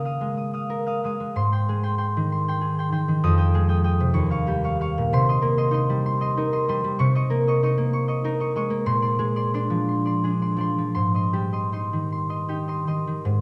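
Peaceful and dreamy, this short classical excerpt for solo concert harp drifts in a rubato 6/8 at roughly 52-66 BPM in Ab major, the warm, ringing, fingerpicked harp sitting up front and spanning Eb2 to Eb6 through lush chords such as Db69, Abmaj7, Fm9 and Bb9, all bathed in the wet reverb of a recital hall until it ends at 13.4 seconds.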